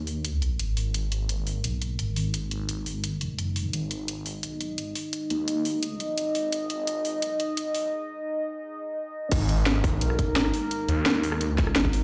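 Aggressive and tense, this excerpt of dark technical drum and bass runs at 172 BPM in G# minor, with a moody, detuned analog pad holding sustained chords through chorus, phaser and sidechain pumping while a filter sweep moves across it during the build-up. A thick, swirling phased saw bass sits up front beside a layered electronic drum kit with a cracking snare, hi-hat, rim click and crash, all heard through a big sound system in a bare room with large studio reverb and a high-pass filter. After a break from 7.9 to 9.3 seconds, a tight electronic kick enters at 9.3 seconds for the drop.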